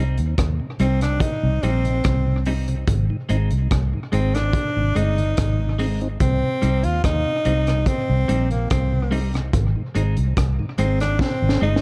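A crunchy, gritty breakbeat kit with a high-tuned snare, tight kick, hi-hat and rim click anchors this meditative, hypnotic roots reggae excerpt alongside a round, foam-muted vintage bass up front, while a twangy clean electric guitar with dub echo and a very quiet tonewheel organ on slow rotary speaker trace a Cm to Ab cycle, a clear, close-miked tenor saxophone with vibrato and dub echo carries the melody from 0.8 s, and a drum fill at 11.2 s closes out the dark small-room mix.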